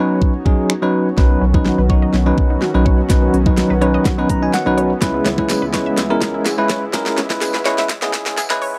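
A bell-like, up-front tine electric piano carries the accompaniment in this energetic, driving dance-pop excerpt, pumping against the beat over a smooth, soft supersaw pad in the background, with electronic pop drums bringing a knocking kick, fat snare, crisp hi-hat and finger snaps. At 1.2 s a deep, saturated sub bass and a lush, detuned unison pluck playing arpeggios with slapback echo join in as a build-up, drum fill and filter sweep take hold, and the piano adds a fill from 4.1 s as the harmony moves from Badd9 to C#m7. A jingly, distant tambourine arrives late, all in a close, dry 1970s-style studio sound.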